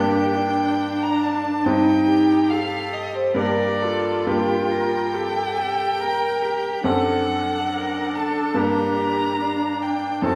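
Yearning and elegiac, this slow romantic movement for piano quartet unfolds in G minor at 70 BPM in 4/4, with a freely breathing rubato feel and tuning set to A4 = 444 Hz. A single bowed violin carries the melody from the front, its tone focused and sung with vibrato over a smooth top, while a lone cello shapes a second line with its own even, vibrato-laden sound. A viola fills in the accompaniment with light vibrato, sounding more distant than its partners, and a grand piano sits up front with a brilliant, polished touch and short sustain. All four play together across the full 10.4 seconds, the harmony moving from G minor through C minor over G, back to G minor, and on to D7 over F# before settling home on G minor at 8.6 seconds. A wet stone room surrounds the ensemble, placing the listener further back in the space, and the passage is cut from a longer piece.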